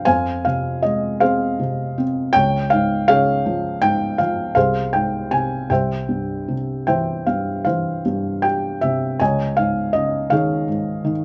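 A felt-muted upright piano, soft and intimate with thick felt, short sustain and audible action noise up close, plays a dark, reflective classical solo in an uneven 6/8 with free rubato, moving from Fm through Db and C to a closing Dbsus2 under light reverb in this brief cut from a longer piece.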